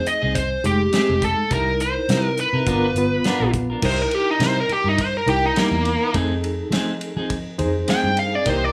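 A smooth, overdriven lead guitar sits up front in this laid-back, swaggering straight-eighth soul blues at 104 BPM, carrying the melody from the start and breaking into a solo at 3.8 seconds over dark, round muted fingered bass, a damped 70s kit with a fat snare and tight kick, dark clean guitar stabs washed in spring reverb, and a bright, reedy electric piano shimmering with fast tremolo, all moving through sharp-nine chords from F7#9 to C7#9 and G7#9 in light studio ambience.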